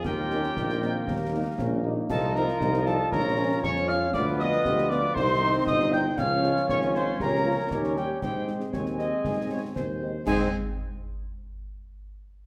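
Festive and proud, this military-style march for wind band in a straight 2/4 sets a dark, distant cornet melody over an airy piccolo, a roomy woodwind section, a background euphonium, a smooth-topped trombone section holding chords, a very quiet French horn section, an up-front tuba bass, and close snare, clash cymbals and bass drum, all bathed in a large studio reverb.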